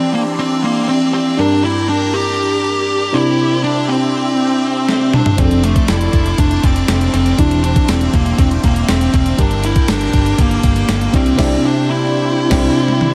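Awash in huge, dreamy reverb, this romantic, nostalgic slice of 1980s-style pop moves at 120 BPM, with an up-front, dark fuzz lead guitar carrying the melody over glassy, bell-like FM electric piano chords and a swirling, phased string machine holding sustained harmonies behind them. A drum fill at 4.9 seconds brings in a thumpy, sampler-style drum machine with tambourine and toms, and by 5.4 seconds a round, foam-muted fingered bass and a very quiet, bright overdriven rhythm guitar join the accompaniment. The chords cycle through Cadd9/E, Gm, Cadd9 and F6, and the band hits a closing accent from 11.4 seconds to the end.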